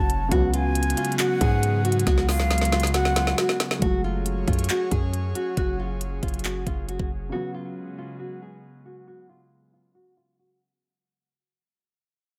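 A brooding, hard-hitting trap excerpt at 137 BPM in F# harmonic minor opens with a fingerpicked nylon-string guitar melody, complete with finger squeak, beside a breathy, close-miked flute line with tape echo, a dark, mellow grand piano, and a punchy, sine-heavy 808 bass, joined at once by an airy, detuned pad with chorus. The electronic kit sits up front with a knocking kick, woody snare, crisp hats and handclaps, rolling into a drum fill before the flute drops out at 3.4 seconds. From 3.8 seconds the harmony moves from C#7sus4 to F#madd9 under a filter sweep and fade-out, and the drums and 808 stop near 7.3 seconds, leaving guitar, piano and pad in a small room ambience.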